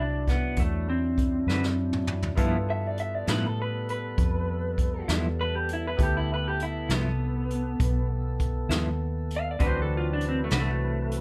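With light reverb and a distant, roomy small-room drum sound, this excerpt from a longer piece is a rollicking yet laid-back slow blues in 12/8 at 66 BPM, where an up-front electric guitar through a small old amp carries the picked melody with a slightly broken-up, lo-fi, compressed tone over a round, foam-muted fingered electric bass. A vintage brush kit with a punchy kick and medium-tuned snare comes in at 0.3 seconds and plays a fill from 1.5 to 2.4 seconds. A brilliant concert grand piano sits in the background, a tonewheel organ holds clear chords through a slow rotary speaker, and a dark, clean fingered electric guitar with tremolo adds accompaniment from 1.5 seconds, all moving from D13 to G13 and back.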